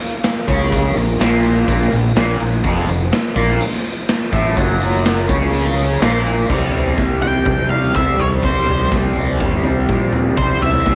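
A straight 4/4 pulse at 124 BPM drives this dark, trippy psychedelic rock excerpt, with a raw garage drum kit up front, gritty and saturated in a pumping stone room, while a jingly tambourine sits in the background until 6.3 s. A bright, double-tracked fuzz guitar riff with phaser and an overdriven fingered bass enter at 0.5 s over a very quiet, mellow organ-string pad of vintage ensemble chords, moving from Bb5 to F5 and then to C at 6.5 s. At 7.2 s a dark octave-fuzz lead guitar takes a high melody with slapback echo, all within a moderate echo-chamber reverb.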